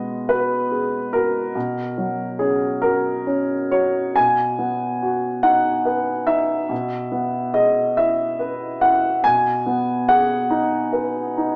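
A woody upright piano opens alone on a B6 chord, sounding close and up front in this intimate, hopeful piece of neoclassical minimalist piano. It moves in a slow, rubato 6/8 at around 47 beats per minute counted in dotted quarters, settled in B major and spanning B2 to G#5. The harmony shifts to F#/B at 1.6 seconds and returns to B6 at 4.2 seconds, giving the brief passage a gentle, unhurried glow. A slapback echo trails the piano, while light reverb and a small-speaker quality frame the sound with an open, modest air. Cut from a longer piece, the fragment runs about 11.6 seconds as a single section.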